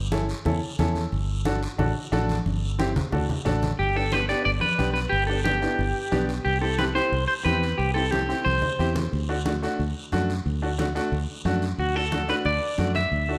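A round, foam-muted fingered electric bass opens this festive, danceable cumbia excerpt at 180 BPM in G major, joined almost at once by a bright, woody upright piano, low-tuned congas in the background and a raspy guiro. At 3.8 seconds a twangy, slightly broken-up electric guitar takes the melody up front with spring reverb, dropping out at 8.9 seconds and returning at 11.8 seconds. A moderate large studio reverb lends the mix a roomy sense of space.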